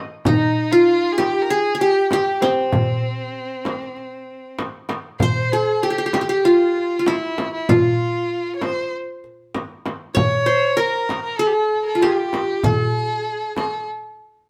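A plucked, bright-edged qanun leads this hypnotic, melancholic Turkish makam piece in C nihavent at 97 BPM, its triple-strung melody sitting up front from the opening moment and shifting into a new section at 5.2 seconds. A rich, smooth violin carries an even, bowed second line with vibrato, while a crisp, compressed metal-shell darbuka struck with hard hands and a small, close, dry frame drum supply the percussion. The ensemble plays live together in one room under moderate studio reverb, in a passage cut from a longer piece.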